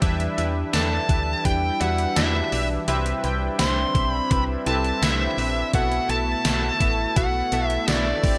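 Lightly reverberant digital ambience frames this urgent, nostalgic 1980s-style pop excerpt, where an up-front, overdriven drum machine with a thumpy kick and gated-reverb snare, joined by hi-hat and tambourine, plays alongside a punchy, round FM bass and detuned sawtooth analog keys with chorus and a filter sweep. A shimmering, chorused pulse-width pad holds sustained chords in the background over an Em7, Cmaj7 and B7sus4 progression. At 0.7 s a dark, high-gain lead guitar enters up front with distortion and digital delay, alongside a band-limited, vintage marimba played with medium hard mallets that carries a second line in the background through its own delay.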